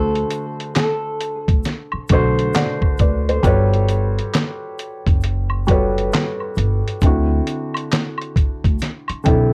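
Lo-fi hip hop at 67 BPM with a swung 16th feel, dreamy and nostalgic, in which a small, fingerpicked nylon-string guitar carries a brief filtered, delayed melody until 2.1 s over a soft, mellow felt-muted upright piano accompanying through D7, Gmaj9#11 and D9, a woody, dark pizzicato upright bass, an up-front, gritty, compressed sampler-style soul kit with thumpy kick, fat snare, hi-hat and handclaps, and close, dry egg shaker and woodblock, the recording wrapped in light reverb and the warbling pitch drift of worn cassette tape.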